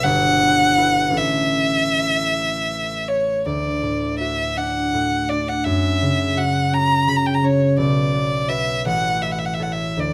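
A rich, smooth, even violin with vibrato sings a serene, lyrical melody up front in this romantic classical duo, flowing in a rubato 6/8 over a concert harp whose mellow, thumb-plucked accompaniment rings out beneath it from 0.0 to 10.1 seconds, all within a light reverb, in a brief excerpt cut from a longer piece.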